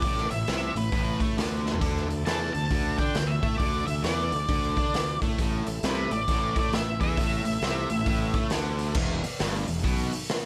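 A raw garage drum kit sits up front in this raunchy, driving excerpt of swung blues rock and southern rock, its punchy kick and medium-tuned snare sounding gritty and saturated in a small, pumping room with a rolled-off top, and it plays a fill at 1.6 seconds. Beneath it, a double-tracked, bright overdriven guitar picks the riff while a growly fuzz bass, fingered and overdriven, carries the low end. A dark octave-fuzz lead guitar picks the melody above as the harmony moves through A5 and D5 power chords. From 1.8 seconds a very quiet tonewheel organ adds thick, percussive sustained chords with key click, chorus vibrato and a slow rotary speaker, then plays its own fill before the harmony shifts to E5 at 9.0 seconds. Light reverb frames the power-trio sound.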